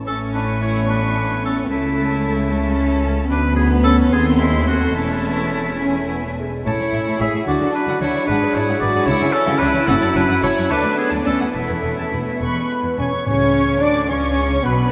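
In a rubato 6/8 at 69-77 BPM, this cheerful, graceful classical-period movement in A major, cut from a longer piece, sets a focused, close violin section's melody over an oboe, a background violin section, a very quiet viola section, mellow French horns, cellos and double basses, with flute, clarinet and a tight trumpet section joining at 12.4 s and bassoon and timpani at 13.3 s, all resounding in a vast, echoing cathedral.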